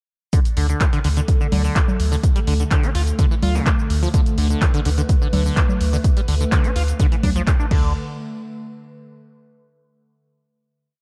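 A punchy, up-front four-on-the-floor kick drives this hypnotic acid house piece at 126 BPM in a straight 4/4, joined from 0.3 seconds by a tape-toned analog drum machine laying down programmed hi-hats, a handclap backbeat, cabasa, low congas and crash cymbal. Over a D5 chord, a squelchy, resonant sawtooth acid bass runs a 32-step line full of accents, slides and filter sweeps, roughened with tube saturation and trailed by subtle chorus and dub echo. Beneath it, a deep, round sine sub bass sits on D2, playing off the beat and pumping against the kick. At 1.1 seconds a warbling, detuned, lo-fi pad fades in with sustained chords, its nostalgic haze thickened by chorus, phaser and its own reverb, and it also pumps with the kick. The whole piece is a single driving drop in a dark, warm production with light reverb, ending with a final hit at 7.9 seconds that rings out to the close.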